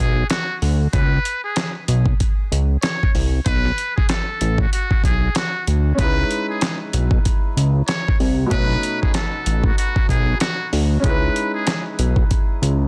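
A buzzy, metal-muted trumpet carries the melody in a jazz style, with vibrato, soft attacks and scooped notes, shaped by filtering and a digital delay across this tough, reflective boom-bap hip-hop fragment. Beneath it, a fat, saturated sawtooth bass and a gritty, compressed sampler-style kit with a thumpy kick, medium-tuned snare, hi-hat and handclaps sit up front with a swung sixteenth-note feel, while a woody, filtered upright piano joins at 5.9 seconds to add accompaniment over the minor and ninth chords. Small room ambience, vinyl crackle and a dense, heavily limited modern master give the track its dusty finish.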